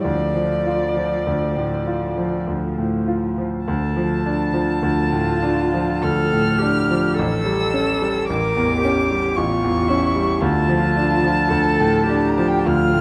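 In a slow, rubato 3/4 that drifts between 48 and 57 BPM, this romantic classical movement for piano trio unfolds in D minor with a yearning, melancholic mood. A single violin carries the melody across a range of D5 to F6 with a dark, woody tone and vibrato. One cello sings a second line beneath it in a warm, intimate voice, played sul tasto with light vibrato, a soft attack and an airy bow. The concert grand piano supplies the accompaniment from A1 to F4, bright and brilliant with a deep bass, and sits as the most prominent of the three. The harmony rests on D minor, turns to A7 at 7.2 seconds and settles back on D minor at 10.4 seconds, all within a recital hall reverb that gives the dark production a lingering glow. The passage is cut from a longer piece.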